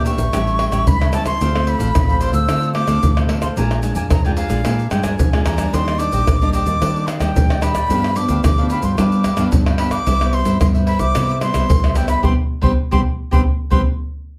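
Heard from a little further back in a small, reverberant room, this joyful, sunny excerpt of samba and choro moves in a straight 4/4. A breathy, reedy concert flute carries the melody high in its range with vibrato and a crisp attack. Beneath it, a picked cavaquinho and a fingerpicked classical nylon-string guitar, its finger squeaks audible, fill out the harmony as the chords move from A7 through Dm7, Bb7, Ebmaj7 and G7 to Cmaj7. A vintage, foam-muted electric bass sits dark and round underneath. Egg shaker, pandeiro, tight surdo and tamborim, struck with hard hands, sit up front from 0.1 seconds. The band hits an accent from 12.2 seconds, and a drum fill begins at 13.6 seconds.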